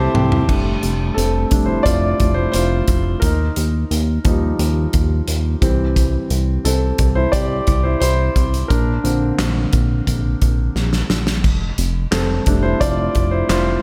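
Uplifting and hopeful, this piano-driven pop excerpt in F major moves at 88 BPM in a straight 4/4, with the chords cycling from F6 through Ebadd9, C and Bbadd9. A very quiet, dark tonewheel organ with slow rotary speaker and key click sounds only in the first 0.5 seconds beside opening fills from piano and drums, and then the intimate concert grand takes a solo from 0.5 seconds, its vintage tone carrying deep bass and audible action noise. Underneath, a glossy, retro chorused synth bass with a plucky pulse-and-saw sound and a punchy acoustic studio kit in a pumping room, with handclaps, toms and crash and splash cymbals, both sit up front with light studio reverb, the drums adding another fill at 10.8 seconds.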